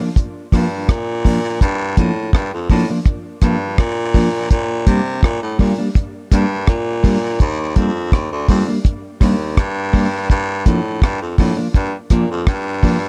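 A raspy baritone saxophone carries the low line in this serious, meditative roots reggae excerpt, its gritty, punchy tone touched with vibrato and a roomy air as it sits up front from 0.5 seconds. The semi-hollow electric guitar opens at 0.0 seconds with a clean, fingered hollow-body accompaniment coloured by tape echo, over a progression moving from Gm7 through Bb6 and Ebmaj7 before returning to Gm7. The deep reggae drum kit joins at 0.2 seconds with hi-hat, kick drum and rim click, sounding dry and smooth, with a tight kick and a rolled-off top, and it stands forward in the balance. A straight, unhurried groove in four holds the three parts together. Light reverb and a small-room ambience frame a dark, warm production.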